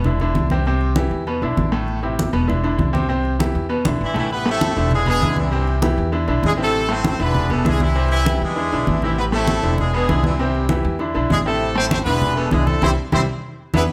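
Salsa with a danceable, passionate drive, built on a bright upright piano whose audible action noise keeps it intimate, a woody, thumpy pizzicato upright bass and low-tuned congas played with soft hands. A drum fill at 3.8 seconds leads into the horn section's entrance at 4.0 seconds, its brilliant, vibrato-rich melody in octave doubling sitting up front alongside the piano. The excerpt is set in a moderate large studio reverb and closes on a band accent at 12.8 seconds.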